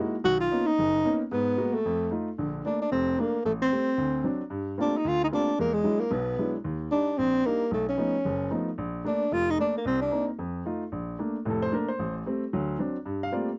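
Sophisticated and intimate, this brisk swinging jazz excerpt sets a breathy tenor saxophone up front, its dark, whispered subtone carrying the melody with light vibrato and a soft attack from 0.2 to 10.3 seconds. A baby grand piano with a natural, short-sustained tone accompanies throughout, moving through rich extended chords and continuing alone after the saxophone stops until 13.5 seconds. The dry, close 1970s-style studio sound is touched with light reverb.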